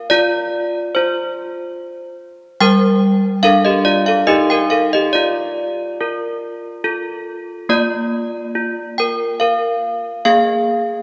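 Desk bells play alone from the first moment, clanky, ringing and slightly out of tune, carrying a festive yet serene classical handbell tune in Bb major at 71 BPM in a straight 3/4. Sitting up front between G3 and G5, they move from an open start through Gm at 2.6 seconds and Ebadd9 toward F and a settled Bb at 7.7 seconds. A long church reverb lets each strike hang in the air, and the music breaks off at 11.0 seconds as if cut from a longer piece.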